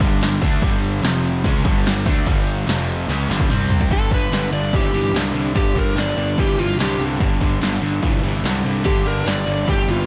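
Blues rock power trio with a southern rock swagger, this raunchy, gritty excerpt drives a distorted, double-tracked guitar riff with slapback echo over a growly fuzz bass and a punchy, tape-tinged analog drum machine, whose fill at 3.1 seconds ushers in a dark, overdriven slide guitar solo from 3.9 seconds, set in light digital ambience.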